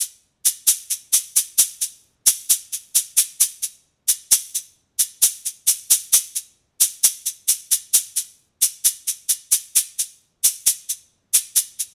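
A straight 4/4 bossa nova pulse at 132 BPM rides on a lone tube shaker, grainy and bright, sitting close and up front in a light reverb, giving this romantic, relaxed 11.9-second fragment of a longer piece its easy acoustic lilt.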